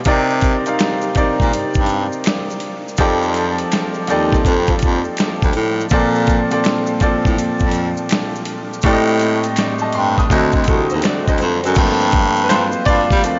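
A slow 82 BPM groove in 4/4 swings its sixteenths, as a compressed, gritty, sampler-style drum kit with a thumpy kick, medium-tuned snare, hi-hat and crash sits up front, re-recorded in a large room. Beneath it, a very quiet, close and dry layer of maracas, finger snaps and group handclaps adds texture to this smooth, sultry neo-soul R&B passage in G minor, cut from a longer piece. A raspy baritone saxophone carries the bass line up front with a bright, pop-style tone and light vibrato, while a brilliant grand piano comps through lush chords moving from Cm9 through F13, Bbmaj9, Am7b5 and D7b9 before landing on Gm11. A dark, clean hollow-body electric jazz guitar picks brief lines in the background around 4.3 and 10.7 seconds, colored with subtle chorus and analog delay. At 11.8 seconds the piano steps forward for a short solo as the harmony resolves, and the whole dreamy mix is soaked in a huge ambient reverb, with its highs rolled off above 7.5 kHz.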